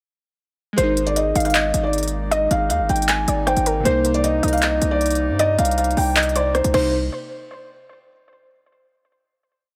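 Hard-hitting and eerie, this short half-time trap piece in C minor at 156 BPM sets a soft, felt-muted upright piano loop with audible action noise over glassy digital keys with chorus, a distant woodwind section holding sustained chords, a punchy 808-style bass with pitch slides, crisp trap drums with fast hi-hat rolls, handclaps and a crash, and a warbling, lo-fi pluck counter-melody with chorus and digital delay entering at 1.4 seconds, all moving from Absus2 to Cm7 before a final hit at 6.9 seconds.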